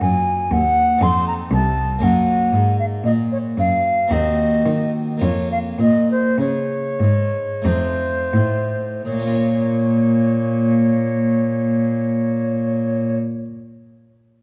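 From the first moment, a woody, pure-toned baroque flute sings an introspective, solemn melody with expressive vibrato, set up front beside a rich, gut-strung bowed cello and a dry, close-miked harpsichord in a slow triple-time sonata movement that broadens through its first 9.1 seconds before moving into a new section, all wrapped in a moderate stage reverb and a dark, mellow production.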